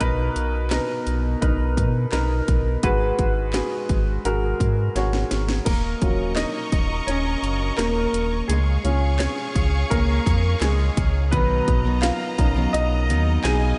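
A dreamy, reverb-soaked mix with a dulled top end frames this earnest, dramatic excerpt of piano-driven pop in Eb minor at 85 BPM, moving through Bmaj7, Abm7, Ebm7 and Db. A woody upright piano with lush chorus sits up front over a deep sine-and-triangle sub bass doubled at the octave and a punchy, layered electronic house kit of kick, cracking snare, hi-hat, handclaps and crash. After a drum fill at 5.0 s, the piano takes a solo from 5.7 s as a clear, bowed studio string section enters softly with sustained vibrato chords, and a full-bodied fingerpicked steel-string guitar adds a riff from 11.3 s.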